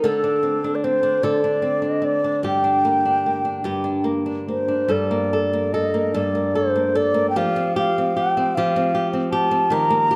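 A moderate recital-hall reverb, about 1.7 seconds long, surrounds this brief slow Celtic folk air, cut from a longer piece. A mellow baroque flute carries the melody throughout, its wooden, airy tone marked by vibrato, soft attacks and a slightly unsteady quality that deepens the longing, mournful mood. Beneath it, a fingerpicked flamenco guitar sits up front with the warm tone of fresh strings, accompanying in G minor. The 6/8 pulse moves at 50 dotted-quarter beats per minute, but the rubato leaves the beats uneven and free. The harmony shifts from G minor to a G minor add9 chord as a second section begins at 4.9 seconds, then to F sus2 at 7.4 seconds, with the ensemble tuned to A4 = 436 Hz.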